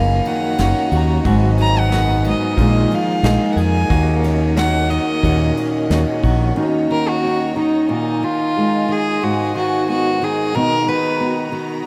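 The recording sits in a vast, echoing space, its wet cathedral reverb lending a haunting bloom to this heartbroken, intimate acoustic folk-pop ballad in Eb minor, a short excerpt cut from a longer piece moving at 90 BPM in a straight 4/4. Up front, a rich, reedy violin with a gut-string, period-style tone carries the bowed melody through a tape echo, while a nylon-string guitar with fresh strings and a classical, thumb-plucked touch supplies the accompaniment. A mellow fretless electric bass, dark and round, sits close and punchy beneath them, and a soft brush drum kit with a punchy kick, medium-tuned snare and ride cymbal enters at 0.2 seconds. In the background, a bright chamber string section holds intense sustained chords with light vibrato, and a clean, compressed electric guitar recorded direct picks arpeggios through a tremolo. The bass, drums and electric guitar drop away around 6.6 seconds, leaving violin, nylon-string guitar and strings to carry the repeated passage over chords moving from Ebm7/Gb and Abm7 to Bb7sus4, closing on Bmaj7.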